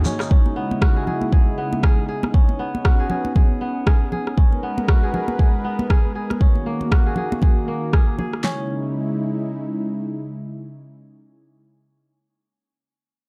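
A swung afro house groove opens the cut, with an up-front deep house kit of deep kick, fat snare and handclaps, a tape-toned electronic rim click, and bright, high-tuned, closely miked congas, all sounding earthy and spiritual in a dark, small-room setting. Over this, a smooth, detuned sawtooth analog pad with a slow attack and chorus holds sustained chords, while a crisp, ringing fingerpicked kora spins arpeggios through a low-pass filter and dub echo, both parts pumping against the sidechain. The percussion falls away between 8.3 and 8.6 seconds, leaving the kora to ring until 10.2 seconds and the pad to hold on to 11.6 seconds in this fragment of a longer piece.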